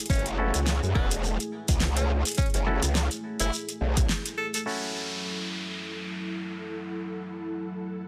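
A dry, close-sounding glitch hop excerpt at 105 BPM in F# minor, swaggering and funky, with a 16th-note swing and an F#m7 chord at the start. A dark analog pad holds sustained chords through the whole clip, pumping against the sidechain, while a punchy, tape-tinged electronic kick and a pop kit with a fat snare, rim click and metallic hats drive the opening section alongside a grainy, close shekere, the kick dropping out at 4.1 seconds and the kit at 4.6. Up front, a growling, saturated bass wobbles low with chorus and overdrive, and a breathy tenor saxophone takes the solo melody in a jazz style, with vibrato, scooped notes and a digital delay trailing behind it. A mellow, stringy clav adds stabs through a combo amp from 0.4 seconds onward, also pumping and echoing. After a band accent at 4.1 seconds the groove falls away, an electronic downlifter sweeps in at 4.7 seconds, and an ethereal, airy pad with ensemble chorus and its own reverb enters at 5.5 seconds to close out the clip with the clav and dark pad.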